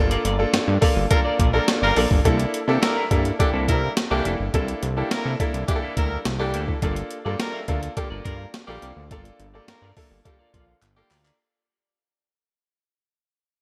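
A straight 4/4 groove at 105 BPM drives this slick, funky stretch of early-eighties boogie funk in G dorian, cut from a longer piece. A gritty, compressed, sampler-style breakbeat kit with thumpy kick, medium-tuned snare, hi-hat and handclaps sits up front under gated reverb, beside a fat, detuned sawtooth analog bass with a filter sweep and a clear grand piano comping over Gm7 and C13. A clean, hollow-body electric guitar riff with subtle chorus sits in the background, a tight, smooth-topped horn section with light vibrato and octave doubling joins at 1.1 seconds, and the bright digital production begins fading out at 2.3 seconds before a drum fill at 10.8 seconds.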